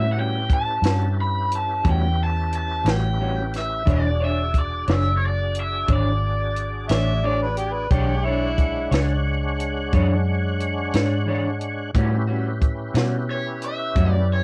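A gritty, laid-back slow blues in 12/8 at 60 BPM opens on a bright, overdriven garage guitar lead over a twangy, slightly broken-up rhythm guitar with harmonic tremolo, a full tonewheel organ through slow rotary speaker and chorus vibrato, and a dark, round, foam-muted bass up front, moving from A13 to E13 and back. A dry, compact cocktail kit with a high-tuned snare and tight kick joins at 0.5 seconds, and an amplified harmonica cuts in between 6.9 and 8.9 seconds with tongue slaps, scooped notes and light vibrato. The home cassette recording has little reverb and is cut from a longer piece.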